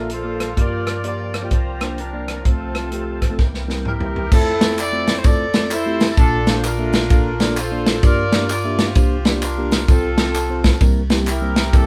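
Jubilant and soulful, this uptempo gospel passage swings along in 4/4 with a band playing live together in one room, its moderate studio ambience lending a natural sense of space. A dark, punchy horn section carries the melody with light vibrato and a smooth top, its loose ensemble feel giving the line a human edge. Beneath it, a mellow, clean tine electric piano sits up front, spreading the harmony across a broad range from deep bass notes to bright upper voicings as the chords move through Bbmaj7, Gm7 and C9sus4 before resolving toward F. An overdriven, gritty tonewheel organ holds thick sustained chords in the background through slow rotary speaker and chorus vibrato, dropping out at 4.3 seconds and returning only briefly at the very end. The acoustic soul drum kit, with a tight kick, a medium-tuned snare, dark cymbals and a rolled-off top, drives things forward and closes the opening phrase with a fill from 3.4 seconds, after which tambourine, egg shaker and group handclaps join in the background as the second section begins and the harmony lifts onto Fmaj7.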